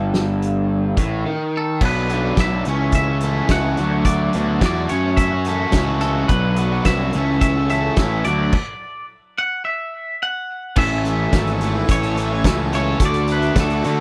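A dry-sounding cut from a longer indie rock piece, jangly and carefree, opens with a twangy, scooped clean guitar melody over a bright garage riff, a punchy fuzz bass up front and a loose drum kit with a fat snare, tight kick and dark cymbals. After a brief break, an overdriven semi-hollow guitar with subtle chorus joins in the background at 1.8 seconds, and a very quiet, shimmering vintage string machine of violins adds sustained chords from 6.3 seconds before a stop in the band. A mellow tine electric piano with tape echo, heard through its built-in speakers, enters as a second line at 10.8 seconds.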